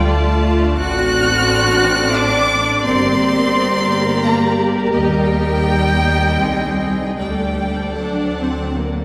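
In a rubato triple metre, this elegiac, solemn passage for string orchestra, cut from a longer slow romantic movement, unfolds with a pliant, breathing pulse. An up-front violin section carries the melody high in its range, its rich, focused tone shaded with vibrato, while a second violin section spins a smooth-topped inner line beneath it. A warm viola section supplies even, smooth accompaniment. The cello section plays with a clear, intense, symphonic sound and light vibrato, joined by an up-front double bass section whose vibrato lends the low register a grave weight. All five sections play together from 0.0 to 9.0 seconds, moving through a harmonic path from Dm through Gm and Eb to a final D, and a concert hall reverb wraps the ensemble in a spacious, lingering glow.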